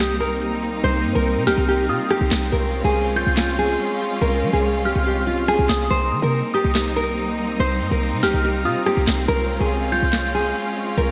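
A half-time drill groove drives this short cut from a longer hip hop track, with an electronic drum kit entering at 0.2 seconds to lay down a sharp snare, crisp hi-hats, handclaps and rim clicks. Underneath, a punchy, tight 808-style bass with a sine body and a layer of noise sits up front, its fast-attack notes decaying. The lead melody comes from a fingerpicked nylon-string guitar, also placed up front, its classical acoustic tone softened by a low-pass filter and trailed by delay. A bowed symphonic string ensemble holds smooth, even chords with vibrato, while an eerie, inharmonic FM synth bell, detuned and mellow with chorus, delay and a long release, traces a high second line in the background until 10.5 seconds. The harmony moves between Cm7 and Db/C, and the whole mix is soaked in a lush hall reverb, giving the dark, tense mood a dreamy depth.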